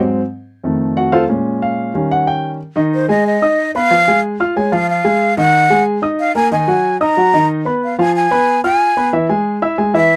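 Sophisticated and lively, this jazz excerpt moves at a brisk 184 BPM in straight 4/4, opening with an intimate grand piano alone as it runs through Ab7, F7, Bbm7 and Eb7, its action noise audible up front. At 2.9 seconds a breathy, mellow silver concert flute enters close-miked with a tongued, straight but slightly unsteady tone, taking the melody over the piano's accompaniment until the cut at 10.2 seconds. The dry, close 1970s-style studio sound carries a light reverb, and the harmony wanders through Fm, Ebm and Fdim before landing on E.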